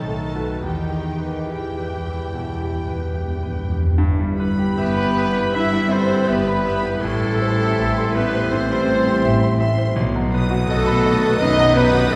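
A clear, polished concert grand piano carries the melody from the outset of this tragic, brooding romantic excerpt in rubato 4/4, with lush symphonic violins sounding high above, an intimate studio violin line, smooth violas, faint punchy French horns, expressive cellos and distant double basses, while dry timpani enter at 0.7 s, tight trombone chords join at 4.0 s, and an airy flute, clarinet, oboe and roomy trumpet stabs arrive at 4.8 s, the whole ensemble heard from far back in a reverberant scoring stage.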